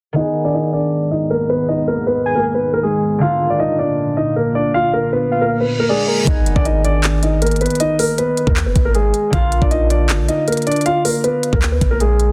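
A dense, heavily limited modern master with light reverb frames this eerie, melancholic trap excerpt, cut from a longer piece at 157 BPM in a half-time feel and tuned to A4 = 439 Hz. A dark grand piano carries the melody up front, its intimate, vintage tone revealing audible action noise, while a thumb-plucked concert harp rings beneath it in accompaniment; both pass through a low-pass filter, and a filter sweep runs across the opening half. A deep, evolving ambient pad built from detuned sawtooth unison with a sine sub octave holds moody sustained chords with chorus and built-in reverb, and a soft octave-layered synth lead adds a round, triangle-based second line with chorus, vibrato and delay in brief appearances. The harmony moves between Abm and Bb, and an electronic reverse cymbal from 5.6 seconds leads into an impact at 6.3 seconds. At that moment a clean, boomy 808-style sine bass with fast attack and decaying notes arrives alongside an electronic trap kit featuring a knocking kick, crisp hi-hats and handclaps, the kit sitting up front, and both continue through to 12.3 seconds.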